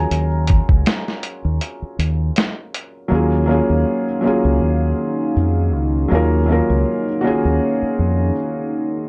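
Melancholic and nostalgic, this lo-fi hip hop excerpt at 80 BPM in Eb minor opens on an Ebm11 chord with a soft, muted felt piano carrying a solo through 3.1 seconds over a round, punchy dub bass and a muffled, tape-warm sampler drum kit with 12-bit grit that drops out at 2.9 seconds, before a detuned, full-bodied analog pad with chorus enters in the background at 4.1 seconds beneath the intimate plate-reverbed piano in a dark, warm mix.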